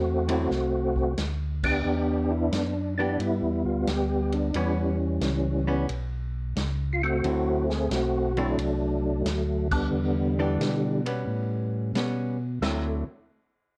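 Worn, warbling cassette tape and light reverb color this soulful, swinging soul jazz organ trio fragment, where a dark, percussive tonewheel organ with third-harmonic percussion carries the melody through a slow rotary speaker and chorus vibrato, a round, mellow tonewheel organ holds the bass with the same treatment, and from 0.3 seconds a clean, compressed hollow-body archtop guitar adds picked accompaniment over a vintage kit with a tight kick, medium-tuned snare and rolled-off top, the band striking accents at 1.5 and 9.6 seconds.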